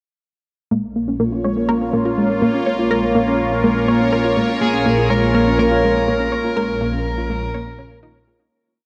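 From 0.7 s a bright, airy resonant pad holding a Bbm7 chord, a dark, detuned round pluck cycling a 12-step arpeggio under a filter sweep, a chorused analog pluck repeating a 5-step riff that drifts against the bar, and a fat sawtooth bass fading in on Bb open this expansive, cosmic piece of ambient, sequencer-driven space music in Bb minor at 123 BPM in 4/4, with a bubbling stepped-filter texture soon holding a high note in the background, a compressed fuzz lead guitar stating arch-shaped motifs up front from 4.6 s, and a fade-out from 5.9 s, all set in a vast, echoing space with a cassette tape character.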